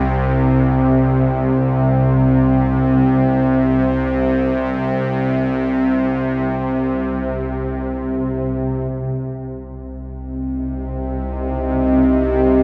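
A nasal, bright, string-like drone with a tense, evolving edge sits up front in this unsettling dark ambient fragment in free time and C minor, while a barely audible bronze singing bowl adds metallic, slowly beating ringing until 8.9 s, when a filter sweep passes over the drone as it settles on C minor, and a deep, detuned pad with chorus and shimmer reverb enters at 10.4 s, all bathed in a wet cathedral reverb.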